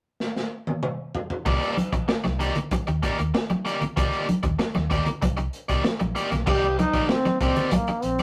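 A brilliant trombone with vibrato and a smooth top stands out most, entering at 6.5 seconds to carry a pop-style solo melody up front over a funk groove in C minor at 96 BPM. This cut from a longer piece opens with a crunchy breakbeat drum kit playing a fill at 0.2 seconds, its saturated, gritty sound coming from a small room with dark cymbals, a medium-tuned snare, a tight kick and a rolled-off top. At 1.5 seconds the band settles on a Cm9 chord as an overdriven electric guitar joins, bright, picked and up front, alongside a fingered electric bass with an amped tone. Congas with a thin skin, hard hands and a damped, medium-tuned sound add bright percussion in the same small room. The straight 4/4 feel is hypnotic and cool, and the rough rehearsal-room recording sits in moderate studio reverb.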